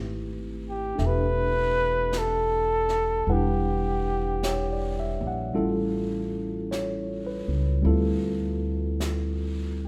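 Heard in a large studio with moderate reverb, this wistful, smoky swung jazz ballad fragment opens on a worn, slightly out-of-tune, barky tine electric piano sounding through its built-in speakers over a woody, dark pizzicato upright bass, with a breathy flugelhorn carrying a short solo melody up front with light vibrato from 0.7 to 5.6 seconds and a brushed drum kit with a high-tuned snare and hi-hat entering at 1.0 seconds, as the chords move from Am9 through Em9 and A7b13 to Dm11.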